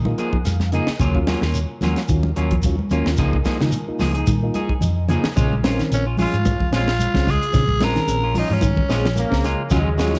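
A tight funk drum kit with a high-tuned snare and a tight kick sets a lightly swung sixteenth-note groove in four, with a short drum fill at 4.3 seconds leading into the second section of this defiant, funky afrobeat clip, which is cut from a longer piece. The hollow-body electric bass sounds dark and round, while bright congas and a grainy shekere hover in the background of a live room. A mellow, clean electric guitar plays arpeggios through cassette tape and analog delay, while a second guitar at the edge of break-up adds twangy stabs bathed in spring reverb. A soft, flute-like tonewheel organ comps with percussive attack, slow rotary speaker and chorus vibrato, adding fills at the opening and just before the second section. A raspy, gritty tenor saxophone enters at 5.9 seconds with a vibrato-laden solo line, and a bright trombone section joins at 9.2 seconds for a brief second line. 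The whole clip has the hazy, top-trimmed sound of a home cassette recording with light reverb.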